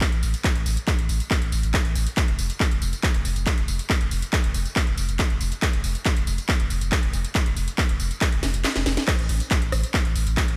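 Driving peak-time techno with a relentless, hypnotic pull, cut from a longer piece: a punchy, layered electronic kick and an up-front drum kit of cracking snare, metallic hats, handclaps, rim click, tambourine and crash cymbal run from the start, their hats, percussion and cymbals pumping against the sidechain under studio reverb. A deep, saturated sine sub bass enters at 0.1 seconds, thick and sustained behind a low-pass filter, pumping in the same way. A drum fill arrives at 8.4 seconds, the kick dropping out briefly from 8.6 seconds, then the drop hits at 9.1 seconds, all set in a light reverb.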